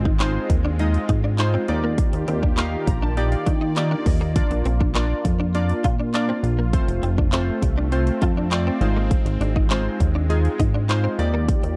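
Dance-pop at 101 BPM in a straight 4/4, this short excerpt from a longer piece feels euphoric and summery, moving through Ab6, Ebmaj7, Bb and F chords. A punchy, layered electronic pop kit of kick drum, bright hi-hat and handclaps sits up front beside a glossy, retro synth bass built from pulse and sawtooth waves, its filter pluck, chorus and sidechain pumping giving the low end a mellow bounce. Round, detuned analog keys built from square and sawtooth waves carry the accompaniment with filter sweeps and chorus, and they add short fills from 2.6 to 4.4 seconds and again from 7.9 seconds. A clean, compressed electric guitar, recorded direct and picked, plays a riff through an ensemble chorus. Behind them an airy, evolving sawtooth pad with a noise layer, slow filter swell and long release holds sustained chords, all inside a dry, close 1970s-style studio sound touched by digital ambience.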